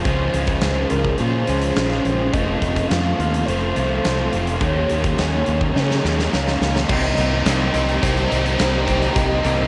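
Hazy and melancholic, this short cut from a longer shoegaze and dream pop rock piece moves at a straight 105 BPM in 4/4, with a home-recorded cassette character and light reverb over the whole mix. A hollow, woody synth lead with vibrato and tape echo carries the melody above a deep, detuned ambient pad that holds sustained chords in the background. Up front, a bright fingered electric bass anchors the harmony as the chords move from Dbmaj7 through F and Eb7sus4 to Cm7. Several guitars thicken the sound: a very quiet, direct-recorded clean guitar plays arpeggios, an overdriven guitar with reverse reverb drives a riff, and a raw garage guitar drenched in lush chorus plays another riff in the background. The huge arena drum kit, with punchy kick and bright cymbals, plays a fill from 5.8 to 6.9 seconds that leads into a new section. At 6.9 seconds, a crunchy, double-tracked overdriven guitar with phaser joins with its own riff.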